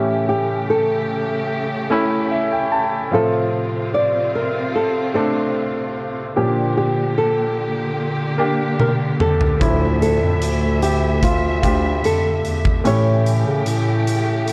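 A mellow, up-front bass clarinet with light vibrato and a jazz-style subtone enters at 9.6 seconds to carry the bass in this emotional, longing pop ballad in D minor, set at a slow 74 BPM in a straight 4/4. A dark, thumb-plucked flamenco guitar sings the melody over a clear, polished concert grand piano with deep bass, which adds an early fill, while a rich studio string section holds soft-attack bowed chords and a punchy arena drum kit with hi-hat, kick and toms enters with a fill at 8.8 seconds. The harmony moves through A7, F/A, Bb6 and Dmadd9, and the whole excerpt sits in light small-room reverb with the worn, warbly pitch drift and faint mains hum of old cassette tape.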